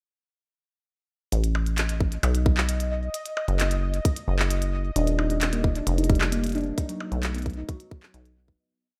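IDM with a playful, intricate character, built as a short whole piece that settles into a steady groove from 1.3 seconds and fades out from 6.2 seconds. A deep acid bass, rubbery and saturated with tube grit, sits up front playing long gliding notes, joined by a glitchy drum kit of clicky closed hats, high woodblock, handclaps and percussion blips in an ever-changing beat. A tight, tape-warm electronic kick arrives at 2.0 seconds with a broken pattern, while a pulsing gated texture holds a single high note, its detuned unison triangle tone softened by chorus and pumping in time. From 5.0 seconds a harp-like synth pluck adds a ringing arpeggiated sequence, a 14-step loop drifting against the bar through chorus and digital delay. The harmony moves from B7/A through D#m/F# and D#maj7 to B, all within a rough home demo mix with light reverb.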